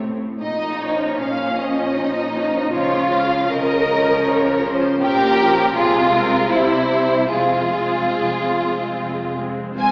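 Dark, woody violas open this slow, yearning romantic movement for string orchestra in 3/4, sounding together with distant cellos in the background and double basses gliding with portamento. At 0.4 s the violins enter, one section carrying a smooth, lightly vibrato melody while the other plays a lush, up-front second line with soft attacks. The solemn harmony shifts from Bb minor to F minor at 5.0 s under a rubato pulse of about 71-84 BPM, all bathed in the wet reverb of a church or concert hall with a thin AM radio colour.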